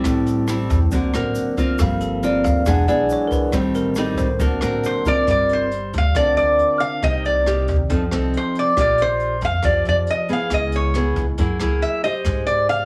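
This bossa nova excerpt has a wistful, intimate mood. A bright, bell-like tine electric piano takes a clean, direct solo from the start until 5.3 seconds. Under it, a full-bodied, fingerpicked nylon-string guitar sits up front in the accompaniment, and a woody pizzicato upright bass anchors the low end. A jazz kit played with brushes keeps time on hi-hat, rim click and a boomy kick, while a grainy egg shaker adds faint texture in the background during the opening passage. From 4.9 seconds a nasal, metallic lap resonator guitar, played with slide and fingerpicks, carries the melody up front through chords such as Gm7, Bb6 and Abmaj7#11. The mix has light reverb, small room ambience and a heavily compressed, radio-like sound.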